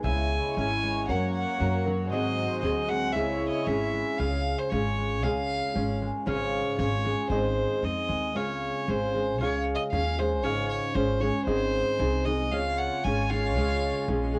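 A bowed solo violin, soft in attack and floating as if slightly distant yet up front, leads this festive, proud mariachi excerpt in 2/4, sung out over fingerpicked classical nylon-string guitar, a thumb-plucked concert harp ringing out mellow arpeggios, and a thumpy, woody pizzicato upright bass. A dark, reedy studio violin section holds sustained chords beneath the soloist at first, its gut-string tone nasal and biting with light vibrato, then drops out at 4.2 seconds as the harmony moves from minor to a brighter major. The solo violin plays sul tasto with a pure tone. The violin section returns at 12.5 seconds to support the closing stretch. The violins, guitar and harp carry the grainy color of a cassette home recording, and a light reverb gives the whole piece a modest sense of space.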